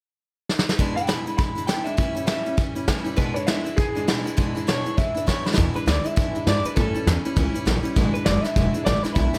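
A twangy, slightly broken-up electric guitar through a small old amp carries the melody with an analog delay, entering at 1.0 seconds over a boxy parlour steel-string acoustic picking E7 and A7 changes and a soft brush drum kit with a punchy kick, which opens with a fill at 0.5 seconds. This upbeat, rollicking rockabilly excerpt moves at 201 BPM in E mixolydian with a swung feel, and a woody, growly pizzicato upright bass joins at 5.6 seconds after a second drum fill. The parts sit in a small room with light reverb, and the acoustic guitar's finger squeak adds a homespun touch.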